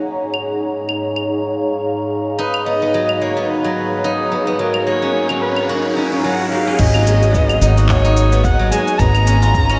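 Earthy and mystical, this organic downtempo passage, cut from a longer piece, drifts on a lightly swung groove. An airy, breathy pad holds sustained chords up front, its soft detuned tone carrying chorus, a sidechain pump and a filter sweep, while a silvery steel-string zither rings out fingerpicked arpeggios through tape echo. An electronic kit, re-recorded in a large room, adds cabasa, claves, crash cymbal and handclaps behind low-pass filtering. At 2.4 seconds a warm kamancheh enters with a smooth, bowed melody full of vibrato and portamento, and a background riser builds from 3.6 seconds. At 6.8 seconds the music settles onto a G#m7 chord as a woody pizzicato upright bass with tube saturation and a gritty, thumpy kick drum arrive, all inside a dreamy mix soaked in huge ambient reverb.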